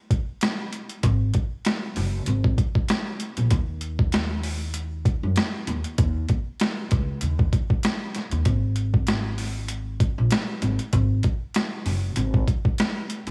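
Tough and moody, this boom-bap hip-hop excerpt rides a swung 4/4 groove built on a gritty, overdriven, compressed sampler-style drum kit with a thumpy kick, medium-tuned snare, rim click and hi-hat, sitting up front in a small room. The drums open alone until a woody pizzicato upright bass enters at 1.0 seconds, staying low between Gb1 and Gb2. Light reverb adds a small room ambience as the same section repeats from 8.5 seconds.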